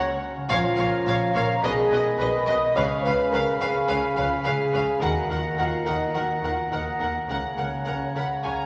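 A wet scoring-stage reverb wraps this short orchestral fragment, a playful, whimsical film cue in F# major at 106 BPM with a mischievous, quirky streak. A rich, expressive violin section carries the melody from 0.5 s, while a second violin section, distant and smooth, joins a clear solo oboe, a mellow clarinet and an airy flute group on the supporting lines. A concert harp rings out thumb-plucked arpeggios across a broad range from the very start, and a distant, roomy bassoon adds accompaniment alongside a close, background viola section. The mellow French horn section, tight and close-miked with light vibrato, sits most prominently with sustained chords, and cello and double bass sections anchor the bass. The harmony moves from F# through A#m, G#m/B and C#7 before settling on D#m and a closing F#/C#.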